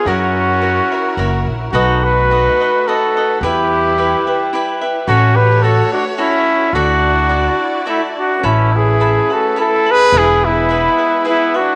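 Romantic and festive, this mariachi-flavoured Mexican folk passage moves in a straight 3/4 at 108 BPM, starting in D major and shifting to A major at 8.4 s. A mellow, up-front trumpet carries the melody with light vibrato and a slapback echo, while a more distant, roomy trumpet plays a warm second line, and a bright, crisp picked cavaquinho supplies accompaniment over sustained chords from a rich, bowed violin section. A woody, dark pizzicato upright bass sits up front from 0.1 s to 10.9 s, and moderate plate reverb gives the cut from a longer piece a spacious sheen as chords such as F#7, Em and Dadd9 lead to a closing E.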